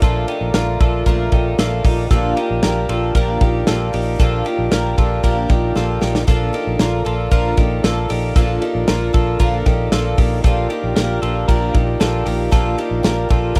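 This rough home-demo mix sounds dry and close, a 13.6-second cut from a longer piece of jangly indie pop at 115 BPM in straight 4/4, wistful and bittersweet in mood and resting on a single Bbmaj7 chord. The loose indie drum kit sits up front with a small-room acoustic feel, dark cymbals across hi-hat and ride, a medium-tuned snare and a punchy kick, and it plays a short fill from 5.8 to 6.3 seconds. Beneath it, the vintage muted electric bass, also up front, holds a low Bb with a round, dark, foam-muted and amped tone. A clean, compressed twelve-string electric guitar spins bright picked arpeggios through spring reverb and delay, while a boxy, shimmering parlour twelve-string acoustic, octave-doubled, picks out accompaniment in the background. A reedy vintage combo organ with light vibrato fills in the middle, giving the jangle a hazy, nostalgic glow.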